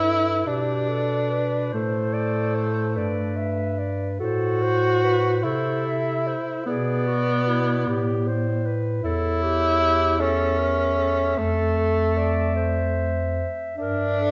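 A serene, lyrical classical passage for single-reed quartet opens with all four players sounding together, cut from a longer piece and moving at a slow 50 beats per minute in a lilting 6/8 with uneven beats and free rubato. A clear clarinet carries the melody high above a second clarinet with a warm, vintage tone that shapes the inner line, while a tenor saxophone, touched with vibrato and sitting up front yet with a distant, roomy quality, supplies the accompaniment. A mellow bass clarinet, also up front, anchors the harmony from below. The music begins in G major, drifting through A minor and a dominant seventh colour before turning toward D minor at 9.0 seconds, closing on a diminished chord at 13.8 seconds. A wet recital-hall reverb lends the ensemble a soft, spacious glow throughout the 14.3 seconds.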